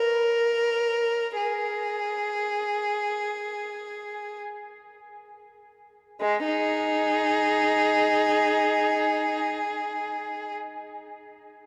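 A lone bowed violin, clear, smooth and even with vibrato, sits up front in a dark, cavernous cathedral reverb, playing a meditative, yearning classical fragment in free time, tuned to A4 = 441 Hz, that slows over its first 6.2 seconds and moves between G#3 and A#4 before the violin falls silent at 10.5 seconds while the reverb tail carries on.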